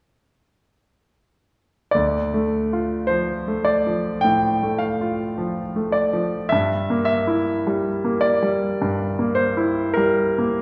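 A clear concert grand piano enters at 1.9 s and plays alone in a romantic classical nocturne in D minor, slow at 52 BPM in 4/4 with a yearning, mournful rubato feel. Its polished, present tone with deep bass and short sustain moves from D minor to E diminished over G at 6.5 s, spanning D2 to G5. A wet recital hall reverb places the listener further back in the room, and this fragment of a longer piece stops at 10.6 s.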